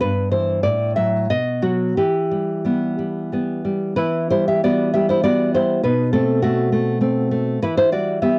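A lone fingerpicked nylon-string guitar, up front and warm, plays a passionate, intimate romantic classical piece in E minor and 3/4, drifting with rubato between 86 and 105 BPM through a phrase stated twice that settles from a B7b9 back onto E minor, all heard as an 8.4-second cut from a longer work with the aged hue of a cassette home recording and light reverb.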